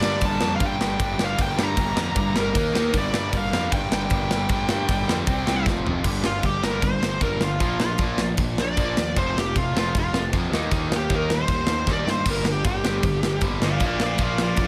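Punk rock in G minor at 155 BPM, aggressive and angry, this excerpt is driven by a big acoustic rock kit up front with bright cymbals, a medium-tuned snare and a tight kick. A growly fuzz bass anchors the low end while a double-tracked fuzz guitar and two overdriven semi-hollow guitars, one bright and in the background and one very quiet, churn out riffs beneath an up-front high-gain lead guitar carrying the melody through distortion and delay. A drum fill at 5.7 seconds ushers in a second section at 6.1 seconds, where the lead breaks into a solo over a Gm, Bb, F and Eb progression. Another fill at 11.9 seconds brings the harmony back around to G minor, all set in a light reverb.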